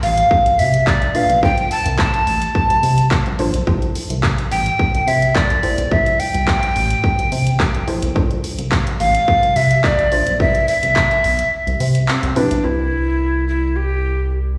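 An airy, hollow tenor recorder with tongued chiff and tape echo leads this summery, euphoric dance-pop fragment over a glossy, nasal synth bass and a punchy, overdriven house kit of kick, hi-hat and handclaps, while a soft, round plucked synth enters at 1.1 seconds, both bass and pluck pumping to the sidechain, as the chords move through Dm7, Am7, F6 and Cmaj7 in a live-gig sound with recital hall reverb, the kick dropping out at 11.5 seconds before the drums stop at 12.6 seconds.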